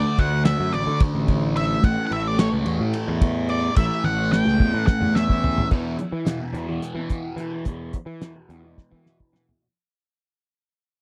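A cloth-damped, thuddy drum kit with a fat snare and dark cymbals sits up front in this dry, close 1970s-style psychedelic rock excerpt in 7/8 at 217 BPM, driving a trippy, hypnotic groove beneath a double-tracked fuzz guitar riff with phaser, an overdriven picked bass, and a dark octave-fuzz lead guitar soloing through tape echo until 5.7 seconds, when the fade-out begins and a filter sweep moves over the distorted riff guitar.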